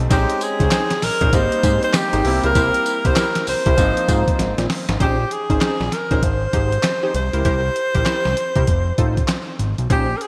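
New jack swing R&B with a slick, bouncy swung groove, where a breathy, intimate alto saxophone carries the melody up front through digital delay over gritty, compressed sampler-style drums with a thumpy kick, handclaps, tambourine and gated reverb, a fat detuned analog bass, punchy ring-modulated polysynth stabs, and a clear, polished grand piano that comps only until 5.0 s, all set in a lush hall and a bright 1980s-style digital sheen.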